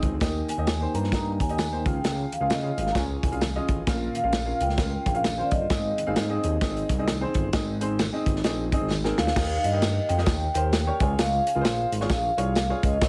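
A woody, boxy upright piano, a smooth, gliding synth bass, a tight, roomy soul drum kit and very quiet, bright congas that drop out at 9.3 seconds open this uplifting, danceable 1960s-style soul cut at an uptempo swing, joined almost at once by jingly tambourine in the background. From 0.5 seconds a mellow vibraphone played with soft mallets carries the melody, its metallic ringing tone colored by slow motor vibrato and tape echo. A drum fill at 8.9 seconds leads into a new section, and the whole mix has a heavily compressed radio sound with light reverb.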